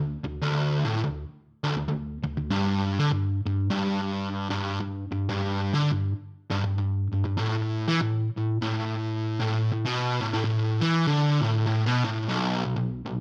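The rhythm moves in a heavy 4/4 with a noticeable swing on the eighth notes, giving the playing a loping, lurching gait. This metal passage is ominous and weighty throughout, and it is cut from a longer piece. A single electric fuzz guitar carries the whole recording from 0.0 to 13.2 seconds, picked low in its register between B1 and E3. Its saturated, distorted tone is double-tracked and sits up front, thick and bristling, with a warm body beneath the grit. A moderate large-studio reverb lends the guitar a sense of space and a dark, looming tail.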